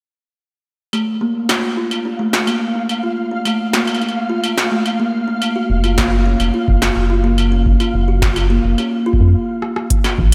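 Woody, boxy kalimba arpeggios with tape echo and a filter sweep lead this wistful, glitchy IDM excerpt alongside a clanging, overdriven industrial drum kit with crisp hats and struck metal. They are joined by a faint flickering grainy texture and, from 5.7 s, a rubbery, saturated square bass soon followed by a deep analog kick, in a dreamy mix soaked in lush hall reverb that breaks for a brief stop at 9.3 s before a drum fill at 9.6 s.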